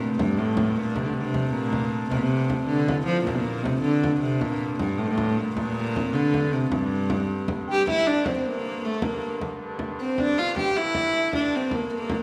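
A bowed viola da gamba with light vibrato and an airy, intimate tone carries the melody up front from the start of this ancient, mysterious medieval dance in G dorian at 104 BPM in 6/8, over a smooth, even hurdy-gurdy drone and a warm background marimba second line, with a deep, dry frame drum played with hard hands joining at 0.2 s, the whole cut from a longer piece, set in a moderate concert-hall reverb, and shifting to a new section at 7.9 s.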